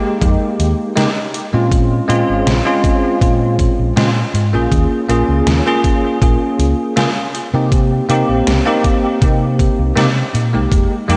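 A bright, bell-like tine electric piano carries the chords from 0.0 s, its clean tone thickened by ensemble chorus and tape echo as it moves through Fm11, Bbm9, a rootless Eb9sus4 and Cm7 in this hazy, melancholic vaporwave excerpt at 80 BPM in 4/4. From 0.2 s a dark, round hollow-body fingered electric bass joins underneath, alongside a thumpy, tape-warm electronic kick and a quieter 80s digital drum machine whose overdriven hi-hat and gated-reverb snare sound as if re-recorded in a large room. A lush hall reverb soaks the whole mix in a dreamy wash.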